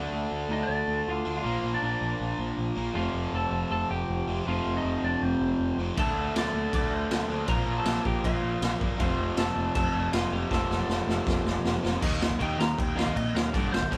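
Aggressive and raw, this punk rock excerpt runs at 159 BPM in a half-time feel for its first twelve seconds, with two bright, crunchy overdriven guitars churning out a riff over Dm, Bb and F while a growling picked bass adds its own overdriven edge and a twangy, slightly broken-up lead guitar sings a compressed melody from 0.5 seconds. The gritty, saturated garage drum kit crashes in at 6.0 seconds, punchy kick and medium-tuned snare up front with a rolled-off top, and a fill leads to a short lead guitar solo over Eb5 at 12.0 seconds. The band sounds like it's playing live together in one room, wrapped in moderate studio reverb.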